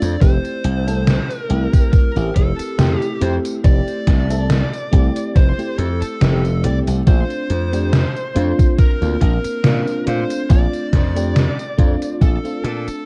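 A dark, cassette-tinged digital ambience wraps this nostalgic, dreamy vaporwave excerpt in F major, moving at a slow 70 BPM with a light sixteenth-note swing from Fmaj9 to Bbmaj7 at 7.1 seconds. A lush, chorused FM electric piano with a soft pad layer carries the accompaniment beneath a smooth, dark, overdriven lead guitar melody treated with tape echo, while a bright, punchy slap bass sits up front. A gated 80s drum machine with hi-hat, gated-reverb snare and tambourine, plus a thumpy electronic kick, both gritty with overdrive and 12-bit sampler crunch and set in a large room, drive the groove until the fade-out from 11.6 seconds.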